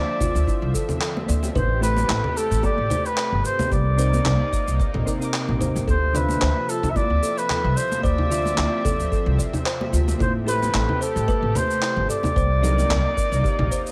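A warm flugelhorn with light vibrato carries the melody with delay over a lush, detuned chorused pad, a kalimba with 12-bit sampler grit arpeggiating in the background, and a woody, growly pizzicato upright bass, opening this wistful, relaxed sunset chillout excerpt at 111 BPM with a 16th-note swing; a deep analog electronic kick and compressed, sampler-style congas, shaker and handclaps join at 0.2 s, distant high-tuned acoustic congas enter at 1.2 s, and soft, round electric-piano-like synth keys with chorus and delay arrive at 1.8 s, all over Dm9, Am9 and Cm9 chords in a small, lightly reverberant room.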